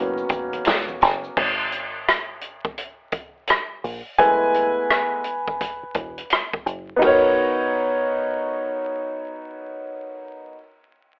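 An 85 BPM groove in 4/4, with sixteenth notes swung at 62%, drives this smoky, mellow jazz-hop clip in G# minor, cut from a longer piece. A smooth, vintage grand piano sits up front with plate reverb, carrying a solo through the opening and into a break where the harmony drops out, then moving from G#m11 to F#m11 and back to G#m11. Underneath, a dark, round, foam-muted fingered electric bass holds the low end. Bright, saturated maracas and congas flicker very quietly between 0.2 and 1.4 seconds. An open acoustic jazz kit with a boomy kick, a medium-tuned snare, rim clicks, hi-hat, and dark ride and crash cymbals plays up to 7.2 seconds in a natural small-room sound. The whole mix is coloured by vinyl crackle, a telephone-like filter and a moderate studio reverb.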